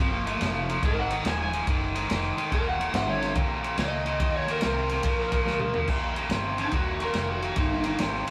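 A dark, overdriven lead guitar played through a small cranked amp opens this laid-back, swaggering electric blues shuffle excerpt with a picked solo, alongside a biting, up-front rhythm guitar riff dressed in spring reverb and a woody, growly pizzicato upright bass, while a smooth, rolled-off vintage drum kit with a punchy kick, snare, toms, ride and crash joins at 0.3 s and plays a fill at 5.5 s, the whole take carrying the rough feel of a rehearsal room with moderate studio reverb.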